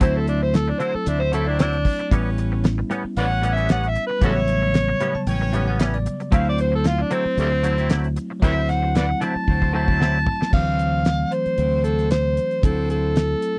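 A dry, close 1970s-style studio sound frames this laid-back, soulful soul blues excerpt in D mixolydian at 114 BPM, where an overdriven, gritty harmonica sings up front with tongue slaps, scooped notes and a light vibrato in a jazz-inflected solo over D9 and A9 chords. Beneath it, a bell-like tine electric piano adds a fill from 4.7 to 6.3 seconds, a twangy, compressed clean guitar with ensemble chorus plays stabs until 10.5 seconds, and a punchy horn section in octaves holds sustained chords in the background. A round, fingered electric bass and a damped 70s drum kit with a fat snare and tight kick anchor the groove, the drums playing a fill from 9.5 to 10.5 seconds.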